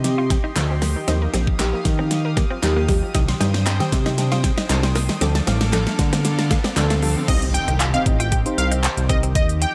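A fat, thick analog bass sits up front in this bittersweet, driving dance-pop excerpt, its detuned sawtooth tone pumping against a produced electronic drum kit with a knocking kick, fat snare and crisp hats. Deep, dark chord stabs, softened by chorus, phaser and a low-pass filter, move through minor and major colours over a shimmering, retro pulse-width pad that swells in slowly and rings on. A clean, direct-recorded electric guitar riff sits in the background with lush chorus, while a very quiet unison pluck spins arpeggios and a hollow group handclap sounds distant, as if in a large room. A faint riser climbs from 2.9 seconds through a build-up and drum fill, and at 7.3 seconds the drop lands with an impact as a punchy, catchy plucky unison lead takes the melody, bright and detuned with tape echo. Light digital ambience gives the mix a gentle sense of space.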